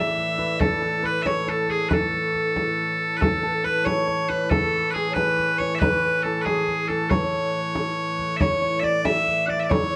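Medieval dance in A major at 92 BPM in a straight 6/8, rustic and ancient in mood, cut from a longer piece. Piercing bagpipes carry the melody up front, while a shimmering, ringing hammered dulcimer plays a second line alongside an airy tenor recorder with vibrato, tongued chiff and rolled-off highs sitting in the background. A dark, woody hurdy-gurdy holds a low drone, and a frame drum played with soft hands enters at 0.2 s, all heard from further back in a small room with a wet, short reverb.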